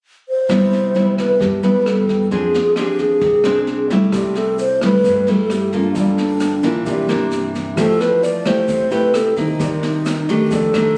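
Captured on a phone in the room with light studio reverb, this breezy, sophisticated bossa nova excerpt at 132 BPM in C major puts an airy, hollow alto flute with vibrato up front from 0.3 s alongside a fingerpicked nylon-string guitar with finger squeak, over dark brushed drums with a boomy kick and a woody pizzicato upright bass in the background, while an intimate baby grand piano with audible action noise and a grainy egg shaker join at 4.1 s as the chords move from Cmaj7 toward Cm9.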